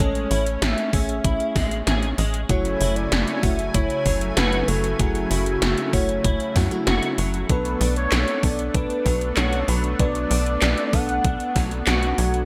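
A straight 4/4 groove drives this dreamy, nostalgic synthwave excerpt, with up-front 80s electronic drums built from handclaps, metallic hi-hats and a gated, overdriven snare, joined at 0.9 s by a thumpy, overdriven electronic kick. Underneath, a tight, punchy sequencer bass pushes with a nasal, plucky sawtooth-and-square tone. A lush, airy unison pad holds sustained chords moving from Amaj7 to F#m7 to Bm7, its chorus shimmer pumping against the beat. A clean, dark electric guitar plays fingered arpeggios through analog chorus and delay, while a mellow FM electric piano with a soft pad layer adds chorus-and-tremolo stabs from the background. On top, a velvety synth lead carries the melody with vibrato, cassette-tape colour and digital delay, all set in a light reverb.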